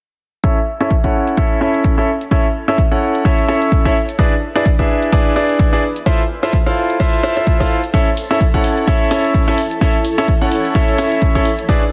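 A punchy, tape-warm electronic kick sits up front with an analog hi-hat muffled by a low-pass filter, driving a swung sixteenth-note piano house groove in 4/4 that feels joyful and uplifting. A brilliant concert grand piano with deep bass carries the riff through A, E7 and Fmaj7, pumping with sidechain compression and moving through a filter sweep. From 2.2 seconds a very quiet granular pad drifts in as a cloudy, detuned blur, all under light reverb and a heavily compressed radio-like sound in this excerpt from a longer track.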